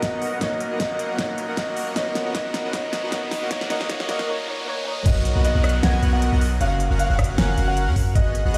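A deep, mellow 808-style bass sits up front once the drop arrives at 5.1 seconds, its long sine tone decaying under the pumping sidechain in this lush, emotional future bass excerpt with a swung, half-time feel. Before that, a build-up carries a dark grand piano melody with dub echo, a soft round pluck with chorus and echo in the background, and a shimmering, ethereal pad that holds very quiet sustained chords until 4.3 seconds. A smooth, detuned supersaw plays a riff throughout, its low-pass filter sweeping through the build-up, while a riser and downlifter add tension. A knocking, tape-warm electronic kick and a layered pop kit with fat snare, crisp hats, rim clicks and crash play a drum fill through most of the build-up. At the drop, an airy, dreamy lead spins high arpeggios behind the rest. The mix has light reverb and the character of a big sound system in a bare stone room, with chords moving from Gbmaj7 through Abm7 and Ebm9 to Bmaj7.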